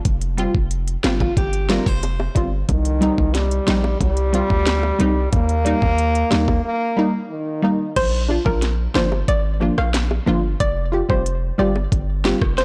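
A hard-hitting 808-style bass and an electronic afro-pop drum kit, overdriven, with a knocking kick and sharp snare, open this sultry, hypnotic dancehall groove. Punchy, detuned chord stabs with chorus and sidechain pumping join at once, while very quiet, low-tuned bongos sit close and dry underneath. A fingerpicked steel-string acoustic guitar adds brief, full-bodied arpeggios from 1.2 seconds, and a distant, roomy French horn then carries a mellow second line with delay from 2.7 seconds, before a hollow, bouncy square pluck takes the melody with chorus and delay at 8.0 seconds, all set in a blown-out recording with light digital ambience.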